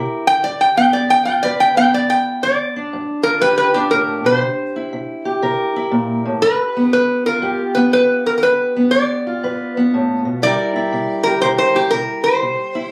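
Acoustic country blues with a gritty, laid-back swing at 120 BPM in G mixolydian, built on a dark, boxy fingerpicked parlour guitar that sets the G7 and C7 changes up front from the start. A metallic, nasal resonator slide guitar, played with a steel bar and fingerpicks, carries the melody up front and slightly louder from 0.3 seconds. The sound is a phone recording in a club with moderate reverb, and the piece is cut from a longer performance, with the second section beginning at 2.4 seconds.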